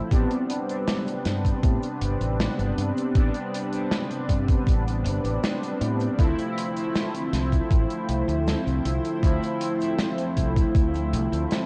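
Cassette-tape haze and light reverb colour this woozy vaporwave excerpt, where a brassy, detuned synth brass part with subtle chorus and tape echo sits up front over a shift from Am11 to Dm9 at 6.2 seconds, while a silky string machine with phaser and ensemble chorus hovers in the background, a round, punchy fingered electric bass holds the low end, and a thumpy sampler-style kick joins a dark, smooth acoustic kit of snare, hi-hat and cabasa, both drum parts carrying 12-bit grit and the kit bathed in gated reverb.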